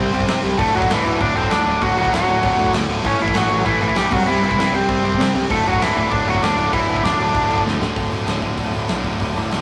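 A biting, overdriven lead guitar sits up front with a picked melody over two bright, distorted rhythm guitars playing riffs, a growling, punchy picked bass and a big rock drum kit with a fat snare and punchy kick, driving this upbeat, energetic punk rock excerpt in a rough rehearsal-room sound, where the lead stops at 7.6 seconds and a drum fill leads into a new section at 8.0 seconds.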